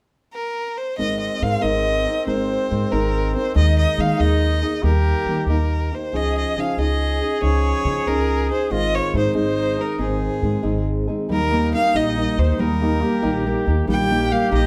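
In a steady 6/8 at 93 BPM, this proud, festive mariachi piece opens with a bowed, boxy violin carrying the melody up front from 0.3 s, joined at 1.0 s by a mellow, punchy trumpet second line with slapback echo, a full-bodied, fingerpicked nylon-string guitar and a woody, growly pizzicato upright bass, before a bright, ringing concert harp adds arpeggios in the background as the key shifts from Ab major to Eb major at 11.3 s, all heard from further back in a wet small room.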